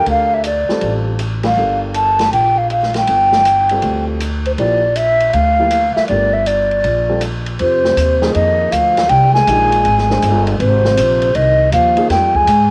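Searching and intense, this brief modal jazz excerpt swings at 160 BPM in 4/4, with a breathy, hollow concert flute carrying the melody up front over warm grand piano chords, a woody pizzicato upright bass and an open drum kit with dark cymbals and a boomy kick, all in a small room on home cassette, while the harmony moves from Dm7 and Gm9 into F dorian at 7.6 s, where a dark, whispered trombone with vibrato and scooped notes enters as a second line in the background, after a band accent at 1.4 s.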